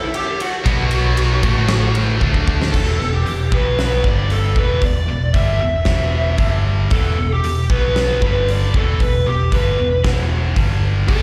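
Heard as a live gig through the venue's PA, this hard rock fragment carries small-room ambience and recital-hall reverb around an aggressive, menacing E minor groove at 115 BPM in a straight 4/4. A dark, overdriven lead guitar, coloured by slapback echo and digital delay, opens with a solo from 0.0 seconds, joined by a scooped high-gain guitar and a double-tracked distorted guitar set in the background, until a drum fill leads into the next section at 2.7 seconds. Throughout, the huge arena kit sits up front with a punchy kick, fat snare and bright cymbals, while a growly picked bass and a tight, distorted, picked riff guitar drive the changes between Em, B5 and G5.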